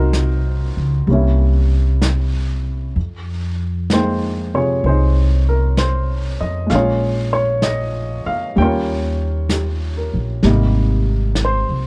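A woody pizzicato upright bass sits up front in this smoky, melancholic jazz ballad excerpt with a swinging feel, alongside an intimate baby grand piano, also up front, with audible action noise and short sustain, and a dark, rolled-off vintage brush kit on snare and hi-hat, the dry, dark mix moving through Cm7b5 and C7b9 before settling into Fm11 at 3.0 seconds.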